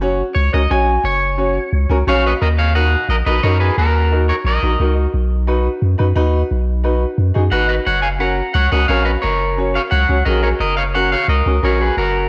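A moderate echo-chamber reverb gives this passionate, driving cumbia a roomy studio glow at a brisk 176 BPM in straight 4/4, as it cuts in from a longer piece. A twangy, slightly broken-up electric guitar carries the melody up front with spring reverb and slapback echo, entering at 0.3 seconds, pausing at 4.9 seconds and returning at 7.5 seconds. Beneath it, a woody, open upright piano with long sustain plays accompaniment and a deep, punchy sub bass with a pitch-drop attack holds the low end, moving through Gb, Ebm and B before settling back on Gb.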